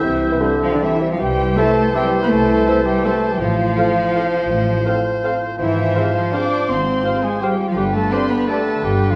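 Cut from a longer piece, this sweeping, festive orchestral ballroom waltz in C major opens with a full ensemble at once, veiled muted violins carrying a very quiet melody alongside a bright, present oboe, distant silver flute, clarinet and mellow bassoon lines, ringing thumb-plucked harp arpeggios, very quiet horn chords and dark muted cellos and double basses, with muted violas and clear trombones joining at 0.4 seconds and tight vintage-toned trumpet stabs at 1.6 seconds, all moving through a rubato 3/4 at 147-180 BPM in a wet scoring-stage reverb as the harmony passes from C through F/A and Fm/Ab to G.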